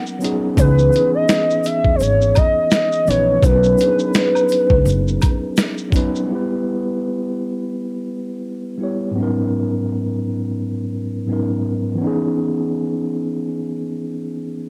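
This cassette-toned home recording has a digital ambience, and it sounds like a mellow, cosy lo-fi hip hop passage cut from a longer piece, with a relaxed swung sixteenth-note feel. Up front, a warbling, nostalgic lead built from detuned triangle and sawtooth tones sings with a soft attack, vibrato, portamento and chorus, until it drops out at 5.6 seconds. A clean, mellow tine electric piano, heard through its built-in speakers, carries the harmony from G#m11 through C#m7 and Bmaj7 and on to Em. A gritty, compressed, pitched-down sampler kit pushes forward with a thumpy kick, a medium-tuned snare, hi-hat, shaker and finger snaps. A woody pizzicato upright bass with steel strings and tube saturation sits beneath, and an egg shaker and group handclap stay in the background of a small room. Once the drums stop at 6.3 seconds, the electric piano plays alone until 14.7 seconds.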